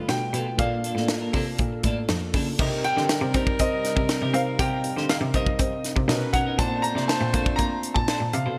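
A clear baby grand piano carries the melody over a worn, lightly overdriven tine electric piano, a smooth, detuned analog pad and a biting, bowed cello bass, joined at once by a bright, twangy clean guitar riff and a tight funk drum kit with a high-tuned snare, as this slick, urban 1980s jazz-funk pop cut at 120 BPM in C dorian gains a jazz-style horn section with digital delay at 2.6 seconds, all set in a lush hall reverb with bright 1980s-style digital production.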